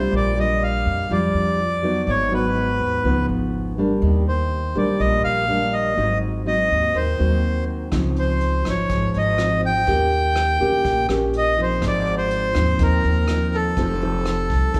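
A reedy, smooth accordion carries the melody up front in this breezy, relaxed bossa nova excerpt, over a thumb-plucked nylon-string guitar with fresh, classical-sounding strings and a woody, thumpy pizzicato upright bass on gut strings. At 7.9 s a vintage brush kit joins mid-forward, with a punchy kick, hi-hat and rim click under a rolled-off top, while lush seventh and ninth chords drift past. The whole ensemble sits in the wet, lingering reverb of a recital hall.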